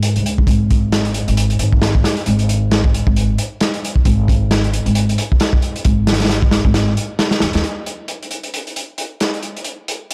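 An excerpt of funky, energetic breakbeat at 134 BPM with a swung sixteenth feel opens on a woody pizzicato upright bass and a crunchy, saturated drum kit of tight kick, medium-tuned snare and hi-hat, both up front in a dark, dry mix, before a break at 6.7 seconds and the bass dropping out at 7.6 seconds, leaving the gritty, high-passed drums alone until 10.1 seconds.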